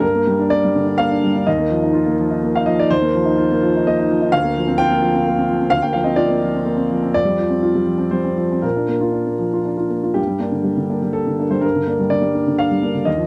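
A lone grand piano, boxy and up front with audible action noise and long sustain, plays an intimate, peaceful neoclassical minimalist passage in a rubato 3/4 that moves from Gm through Ebsus2, Bbadd9/D, Fsus2 and Bb before returning to Gm at 10.2 seconds, captured in a dry, close 1970s-style studio with small room ambience and cut from a longer piece.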